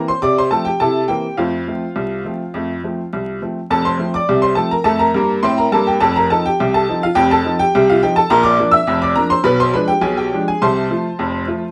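Through vinyl crackle and a moderate room reverb, a live-in-one-room recording captures a jaunty, lively ragtime piece at 104 BPM in 2/4 and F major, played by a solo bright upright piano that sits up front with a woody, intimate tone, audible action noise and long sustain, spanning F1 to E6 and moving through F/C, C7, F7, Bb and a Bdim7 before returning to F/C near 10.6 seconds in this short cut from a longer piece.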